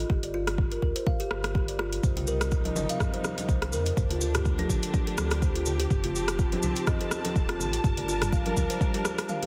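Driving and hypnotic, this afro house passage moves at 124 BPM in G minor with a 16th-note swing, and it is cut from a longer piece. A round, sine-like sub bass and a woody, thumbnail-plucked kalimba playing arpeggios both pump against the sidechain from the first moments, the kalimba's ringing tone trailed by a digital delay. Up front sits a deep, tape-warm electronic kick, joined by a deep house kit of metallic hi-hats, rim clicks and toms. At 2.0 seconds a lush symphonic string section enters with bowed, vibrato-rich sustained chords that also pump, moving from Cm through D7sus4 and F7 to Gm, while a grainy, band-limited cabasa joins and soft-handed, medium-tuned congas fill in the background shortly after. A drum fill at 9.3 seconds closes the passage, and the whole mix carries light reverb and studio ambience with a heavily compressed, radio-like sound.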